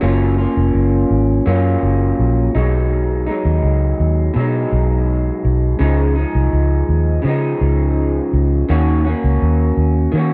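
Hazy, laid-back indie bedroom pop at 83 BPM in Db major, this short clip pairs a slightly broken-up, lo-fi electric guitar through a small old amp, thickened with lush chorus and a warbly pitch drift, against an up-front, foam-muted fingered bass that sounds round and punchy, both playing throughout over Gbmaj7, Cb6, Dbadd9 and Ebm7 in a light reverb.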